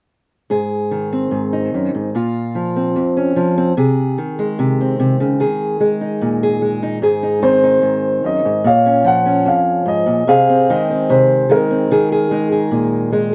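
A dark, mellow concert grand piano carries the melody from 7.4 seconds, its boxy tone and long sustain sitting up front in this nostalgic, tender acoustic folk-pop ballad, cut from a longer piece. Beneath it, a warm fingerpicked archtop guitar, also up front, provides the accompaniment from the opening moment, moving through Ab, Bbmadd9, Ab/C and Ebsus4 in an unhurried straight 4/4. A moderate studio ambience gives the pair a close, intimate setting.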